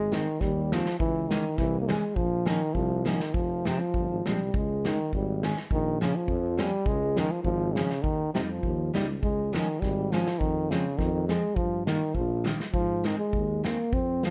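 Jolly and festive, this short alpine folk excerpt has the spirit of an alpine dance band, moving at 102 BPM in 2/4 with a loose, rubato feel in Ab major. A mellow euphonium carries the melody up front, with light vibrato and a classical bearing. Beneath it, a tuba with a soft attack holds down the bass in a similarly classical style. A jumbo steel-string acoustic guitar adds full-bodied picked accompaniment, with the odd finger squeak. An acoustic drum kit played with bundle sticks sits up front, pairing a punchy kick with a medium-tuned snare and hi-hat in a studio-room sound. All four parts play together from the opening moments to 14.3 seconds, in a dry setting where the harmony moves from Ab through Dbm, Bbm and Fm before returning to Ab.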